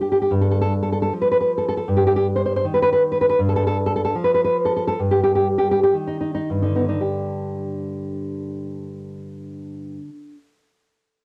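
This romantic piece for solo classical guitar, cut from a longer work, has a tender, warm mood and a flexible rubato feel in 2/4, with the tempo drifting between 53 and 81 BPM. A single nylon-string guitar carries everything, its acoustic tone deep and classical, with a thumb-plucked character and an up-front presence, ranging from G2 to C5. The harmony rests in G major, moving from a G9 chord through an augmented G and an Eb over G before settling on an open G fifth. The pace slows from 2.6 seconds until a new section begins at 7.0 seconds. The guitar's cassette-tape coloring gives the home recording an intimate, homespun quality, set in a small room with a moderate touch of reverb.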